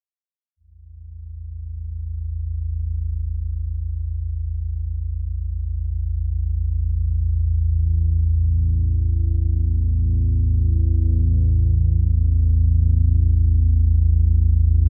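A lightly reverberant recording carries this ominous, desolate ambient excerpt in free time, where a lone deep rumbling drone, dark, warbling and up front with a vintage triangle-and-sawtooth tone, slow attack and long release, sustains between A1 and E2 from 1.0 to 14.9 seconds through built-in reverb and tape echo.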